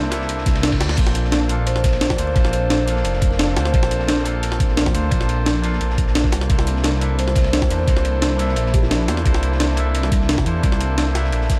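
A deep, rumbling detuned saw bass sits up front in this lush liquid drum and bass excerpt at 174 BPM in Bb lydian, under a knocking, overdriven electronic kick and a gritty, pitched-up sampler breakbeat with a high-tuned snare, while a smoother acoustic break with dark cymbals stays in the background. A barky, bright tine electric piano with delay carries the C13 and Bbmaj9 harmony over very quiet, veiled con sordino strings, and a very quiet reverse cymbal sweeps in at 0.6 seconds. A woody, hollow kalimba with digital delay rings out a melody from 1.7 seconds and again from 7.2 seconds, all within a dark, warm production with light small-room ambience.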